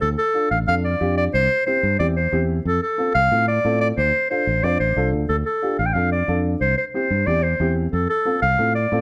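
A straight 4/4 cumbia pulse at 182 BPM drives this danceable, passionate Latin excerpt in D minor, where a soft-attacked, classical-style clarinet sings the solo melody up front over a direct, amped fingered electric bass, while a woody, slightly detuned upright piano with long sustain enters at 0.3 s to fill out the Dm, C and F changes in a light reverb.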